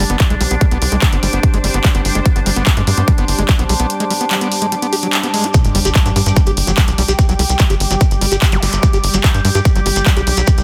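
Psychedelic trance at 146 BPM in G major, driving and alien, this fragment of a longer track opens with a punchy, up-front electronic kick and a layered dance kit of handclaps and hi-hat over a tight, nasal sequencer bass with a fast-attack filter pluck. A screaming acid riff, squelchy and aggressive with resonant filter sweeps, is soaked in distortion, chorus and delay, and it pumps against the kick. Alongside it, a bright, wave-folded drone holds sustained chords with moving overtones, while a cloudy, detuned granular pad blurs across the middle and upper registers, both breathing with the same sidechain pumping. After an accent at 5.1 seconds, the drop lands at 5.5 seconds with an impact, a grainy, band-limited shekere slips into the background, and an electronic sub drop and zap sit low in the mix until 8.6 seconds. The master is dense and heavily limited, with light reverb.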